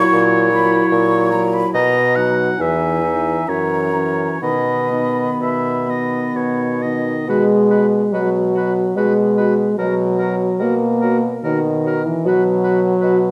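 In a 3/4 at roughly 61-80 BPM, with free rubato, this tender, lyrical slow movement for wind quintet in B major unfolds as a brief passage cut from a longer piece, moving into a new section at 7.3 seconds. An airy, hollow concert flute sings the tongued melody with vibrato above an oboe second line touched with light vibrato, while a warm French horn sits up front in the accompaniment beside a smooth-topped clarinet in the background, and a mellow bassoon carries the bass prominently. The quintet rings in the generous reverb of a recital hall.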